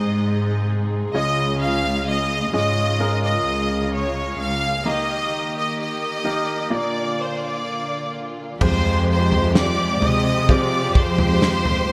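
A clear, focused violin section sings the tender, heartfelt melody of this pop ballad over brilliant grand piano with audible action noise, a lush, smooth string section in the background and veiled, muted cellos up front on the bass; after a break at 4.9 seconds, a new passage opens at 8.6 seconds where a very quiet, distant French horn section, a full-bodied fingerpicked jumbo acoustic guitar and a loose indie drum kit with gated reverb join, in moderate plate reverb and bright 1980s-style digital production.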